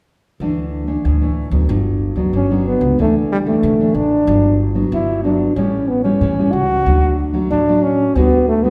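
Samba and choro at 93 BPM in D major, playful and lively, where a dark, thumb-plucked classical nylon-string guitar and a woody, thumpy pizzicato upright bass on gut strings set up Dsus2 and Gmaj7 chords from 0.4 seconds before a mellow, close-miked jazz trombone with light vibrato takes the solo melody at 2.4 seconds over a turn through A7 to D, all bathed in the reverb of a recital hall in this short cut from a longer piece.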